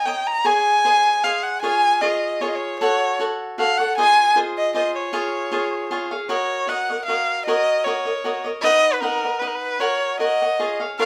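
A clear, smooth erhu sings a festive, romantic Mexican folk melody up front with light vibrato and portamento, over bright, crisp picked cavaquinho at 154 BPM in 3/4, moving from Db major to F# major at 6.3 seconds in a moderate studio reverb, in an excerpt cut from a longer piece.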